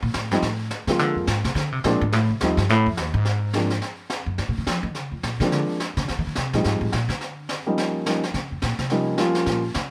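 Sophisticated and warm, this swinging jazz piano trio excerpt features a woody, thumpy pizzicato upright bass on gut strings soloing up front throughout, while a distant, roomy high-tuned snare played with brushes sits behind it with a rolled-off top and a dark, mellow grand piano carries the melody from 0.3 seconds, all within a light reverb.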